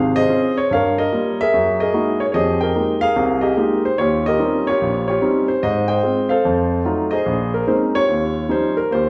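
A lush, roomy studio reverb surrounds an up-front, warm grand piano playing solo jazz at a relaxed 146 BPM swing in 4/4, moving through rich extended harmonies from Dbmaj7 to Eb9 across this brief passage, recorded live in one room and cut from a longer piece.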